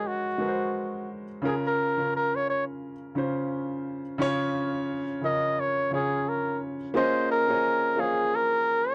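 Bittersweet and cinematic, this brief soul passage moves at 87 BPM in a lightly swung 4/4, with a flugelhorn carrying the melody over grand piano accompaniment. The flugelhorn is up front and punchy, with a smooth top and light vibrato, and plays a solo through the first 7.0 seconds before the music shifts to a new section. The intimate piano, its action noise audible, sits close in a dry, warm 1970s-style studio sound, moving through chords such as Ab9sus4, Db6 and Bbm11.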